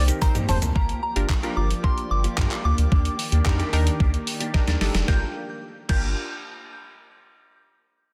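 Dance-pop in G minor at 111 BPM, this confident, energetic excerpt pairs a thumpy, up-front 80s drum machine with gated reverb on its snare, a deep, round analog bass with sidechain pumping, a lush, detuned unison pad with phaser, a bright sawtooth pluck, a mellow FM bell with digital delay, a twangy clean guitar riff in the background, and a smooth portamento lead heard only in the first 0.6 seconds, with drum fills at 0.2 and 4.5 seconds over chords moving from Cm7 through Gm7 to Ebmaj7 in a dense, heavily limited, dry mix.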